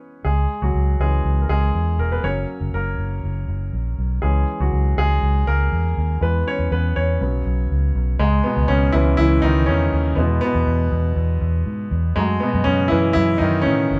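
A clear, polished baby grand piano leads this piano-driven pop excerpt, carrying a solo from the opening through to 14.0 s. The mood is driving and bittersweet, set at 121 BPM in a straight 4/4, beginning in C# dorian and shifting to C# minor at 8.2 s. A vintage fingered electric bass joins at 0.2 s, dark, round and punchy, its foam-muted tone sitting up front and low beneath the keys. The harmony moves through C#m, F#, E and Bsus2 before the second section turns to C#m, E and a closing F#madd9. The two players sound as if they are together in one room, with a moderate studio reverb lending a natural sense of space.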